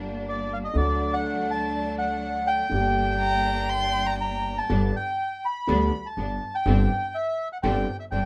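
A reedy, up-front bandoneon carries the melody through this dramatic, tense tango excerpt in a loose rubato feel, over a deep-bassed concert grand piano accompaniment, a woody, growly pizzicato upright bass and distant, lush bowed string-section stabs, while a single expressive violin with vibrato and portamento adds a second line from 3.2 to 4.7 seconds, the whole heard in a light reverb.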